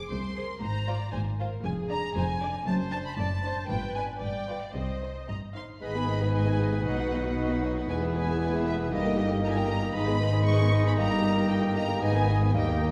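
In a straight two-beat metre, this cinematic passage, cut from a longer piece, moves with a magical, mischievous air. Bowed string sections carry it from the start: violins sing the lush, expressive melody with vibrato and a soft attack, a second violin line sits in the background, violas fill in the accompaniment, and cellos and double basses hold the bass, the basses sounding distant. The opening harmony winds through diminished and dominant chords before settling in minor, and at 5.8 s the music shifts to a new minor key. At that moment a mellow clarinet and a warm oboe add second lines, while a vintage-toned bassoon joins the accompaniment in the background. A wet scoring-stage reverb places the ensemble further back in the room, giving the strings a rich, spacious glow.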